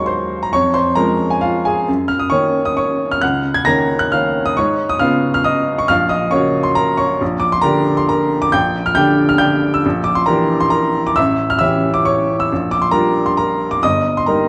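Graceful and elegant, this short classical piano waltz moves in 3/4 at about 135 BPM, its beats uneven and its pulse stretched by rubato. A solo upright piano carries the whole 14.5 seconds, ranging from G1 up to Bb6, and sits up front with a clear, woody, intimate character and audible action noise that keeps the instrument sounding natural. The harmony passes from Ab7/Eb and Db/F to Gb6, then turns through Gm/Bb, Em7b5/Bb and A7 before settling on Bb6 and closing on Eb/G. A wet recital-hall reverb with a 1.5-second decay surrounds the playing, and the overall production is dark and warm. The passage is cut from a longer piece.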